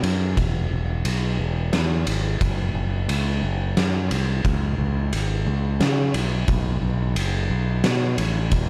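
Post-rock in a steady 3/4 at 88 BPM, this short cinematic excerpt carries a cathartic weight from its opening second to its close at 8.7 s. A growling fingered electric bass sits up front, its bright, overdriven tone pushed through an amp and ranging from E1 to C#3. Beside it, an oversized low-tuned acoustic drum kit plays kick, snare and ride throughout, sounding dark and gritty with a rolled-off top. The kit has a punchy kick and a fat snare, and its saturated character comes across as if captured in a bright stone room. The overall mix is dry and close, keeping both parts heavy and immediate.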